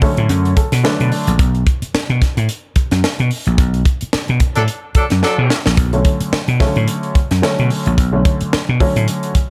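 Light reverb and a small-room ambience frame this sly, driving funk excerpt with a swung sixteenth-note feel, where a crisp fusion drum kit with a high-tuned snare and punchy kick runs throughout beneath a growly, amped vintage slap bass, a dark, woody upright piano with audible action noise stabs in with a fill at 0.3 seconds and returns at 5.9 seconds, and a mellow, distant horn section adds a brief second line at 4.6 seconds amid a band accent and a drum fill.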